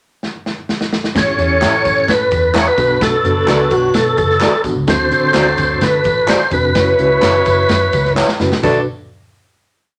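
A lightly overdriven tonewheel organ sits up front with chorus vibrato and a slow rotary speaker, carrying a motif-based melody of song phrases through this short, driving 1960s-style soul piece at 128 BPM in B minor. A raw garage drum kit opens with a fill from 0.2 seconds, its punchy kick, gritty saturated snare on all four beats, hi-hat and crash keeping an urgent straight 4/4 drive, with a second fill just before the end. Beneath it, a foam-muted, round picked bass plays a melodic, syncopated line with slides and chromatic approach notes, while a reedy, worn electric piano with fast tremolo pushes close-voiced chords through its built-in speakers. A clear, tight saxophone section holds swelling long notes as a second line, and a dark, slightly broken-up electric guitar with tremolo adds short chops on the backbeat from 1.6 seconds. Tambourine and handclaps sound distant on the backbeat, and after a pre-chorus moving through A7, Bm7, D7 and F#7sus4, the piece lands on a final Bm7 chord at 8.6 seconds in moderate studio reverb.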